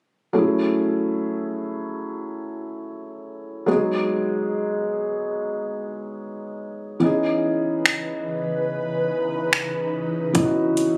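Contemporary R&B at 72 BPM with a longing, late-night mood, this excerpt opens on a soft felt-muted upright piano, dark and boxy with audible action noise, moving through F#m9, G#m7 and C#m9 before an ethereal, detuned pad with ensemble chorus, reverb and phaser arrives at 7.7 seconds and a trap kit of finger snaps, metallic hi-hats and a hard-clipped kick joins at 7.9 seconds, the whole recording carrying a light room reverb.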